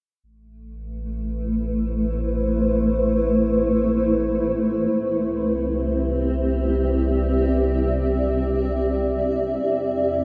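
Melancholic and spacious, this ambient passage from a longer piece opens with a round, sine-toned sub bass at 0.2 s, joined at 1.1 s by an up-front granular cloud pad whose blurred, detuned chords slowly bloom and drift. The harmony moves from Am to C and reaches a bare E7, its third omitted, near the close, all bathed in a huge, wet reverb that keeps each chord hanging in the air.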